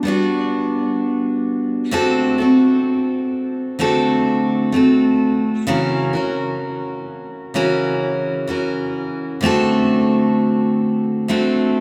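A long cathedral reverb, lingering for 4.2 seconds, surrounds this hopeful, emotional pop excerpt, recorded in a church or concert hall. A single picked steel-string acoustic guitar plays alone throughout, up front with a bright, full-bodied jumbo tone, fresh strings and audible finger squeak. It moves from Gmaj7 to D7, then to F#7/C# at 5.7 seconds before returning to D7, tuned to A4 = 436 Hz.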